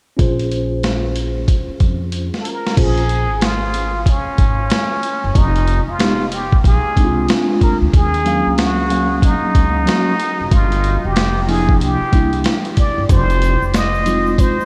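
A swung boom bap groove at 93 BPM in Bb minor sets a smoky, nocturnal jazz-hop mood, with a gritty, compressed sampler-style kit up front, its thumpy kick and high-tuned snare re-recorded in a large room, over woody, dark pizzicato upright bass and a mellow, clean tine electric piano heard through its built-in speakers. During a drum fill, a plunger-muted trumpet enters at 2.4 seconds for a jazz solo full of wah-wah, light vibrato and scooped notes, riding changes that move through Bbm7, Ebm7 and Fm7. Soft-handed tube shaker and congas slip in quietly in the background at 13.1 seconds, and a huge ambient reverb soaks the whole mix in a dreamy haze.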